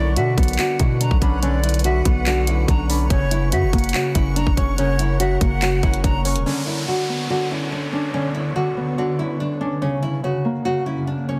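A trap kit of bright hats, handclaps and a hard-clipped kick sits up front beside a deep, sine-toned 808 bass with a fast attack and long decay, driving a brooding, hard-hitting half-time trap groove until 6.5 seconds. Over it, a dark, woody nylon-string guitar plays the fingerpicked melody through digital delay, joined by a breathy, close-miked silver flute on a tongued second line, while a thumb-plucked Celtic harp rings underneath and a blurred, detuned granular pad drifts in the background. After the drums, bass and flute stop, an electronic downlifter sweeps through from 6.5 to 9.8 seconds as guitar, harp and pad carry on over the Bmadd9 and F# changes, all in a dense, heavily limited mix with light reverb.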